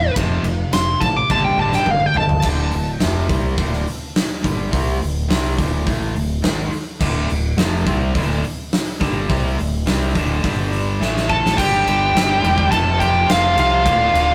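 A rough rehearsal-room recording with saturation and moderate reverb carries this heavy, driving hard rock excerpt in D minor at 105 BPM. A dark, high-gain lead guitar with tape echo solos up front at the start and returns at 11.3 seconds alongside a smooth overdriven second lead in the background, over a bright, scooped distorted rhythm guitar, a sludgy overdriven guitar that returns at 7.0 seconds, a growling, amped fingered bass, and a big rock drum kit with a fat snare and punchy kick that fills at 11.0 seconds.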